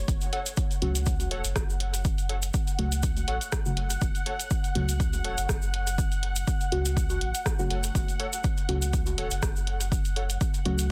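A pure sine sub bass and a resonant, bubbling stepped-filter texture with chorus and built-in reverb open this 10.9-second dub techno fragment in F# minor at 122 BPM, a deep, cavernous piece with a lightly swung 16th feel and sidechain pumping on both. From 0.1 s an overdriven, up-front kick drives the groove alongside hi-hat and rim click from a tape-toned analog drum machine fed through dub echo, plus a grainy, bright tube shaker. At 0.3 s detuned, nostalgic lo-fi synth keys join, warbling through a riff with chorus and dub echo. At 0.8 s soft, dark chord stabs arrive on an F#m chord, colored by phaser, cassette tape saturation, chorus and dub echo, all within a dry, dense, heavily limited modern mix.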